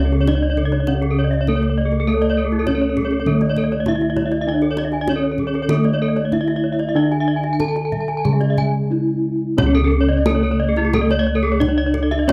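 This Balinese gamelan passage in C# pelog moves at 89-100 BPM in a straight 4/4, with a shimmering, brilliant mood. A mellow metallophone played with padded mallets carries the melody, while two bright metallophones struck with horn mallets spin paired-tuned arpeggios that beat and glimmer above it. Beneath them, a wooden-mallet metallophone accompaniment drops out at 9.6 s as the passage turns to a new section, and round, full bossed gongs sit dry and up front on the bass line, with a tight kendang tucked into the background in a close, 1970s-style studio sound.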